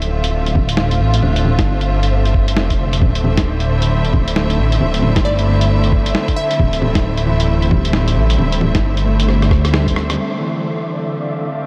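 Future garage at 134 BPM in D minor with a 16th-note swing, ghostly and wistful, this excerpt from a longer piece drifts on lush, bowed studio strings carrying 12-bit sampler grit and sidechain pumping over a deep, rumbling detuned saw bass, while a thumpy electronic kick joins a muffled, tape-toned sampler kit of bongos, hi-hat, rim click and snare from 0.6 seconds. A dark, clean electric guitar with analog delay sits in the background alongside a flickering granular texture, and a very quiet, crystalline wavetable pluck touches the melody around 5.2 seconds. After a drum fill and band accent, the strings and guitar take a filter sweep from 10.2 seconds as the drums and bass drop out, all bathed in a dreamy, reverb-soaked mix.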